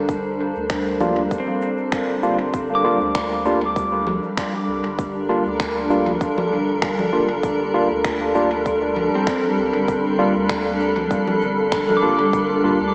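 A blurred, evolving granular pad holds sustained chords up front over a deep, round sub bass, while a very quiet, glassy texture of drifting overtones drops out by 2.6 seconds in this hazy, spacious ambient dub excerpt. A tight electronic kick, re-recorded in a large room, joins with cabasa, finger snaps and congas from the same room trailing dub echo, along with barky, bright tine electric piano stabs also thrown into echo. A twangy pedal steel guitar, played with fingerpicks and slide, adds arpeggios with volume swells in diffuse ambient delay from 1.4 seconds and again from 9.2 seconds, all within a dreamy, reverb-soaked mix with a small-speaker sound.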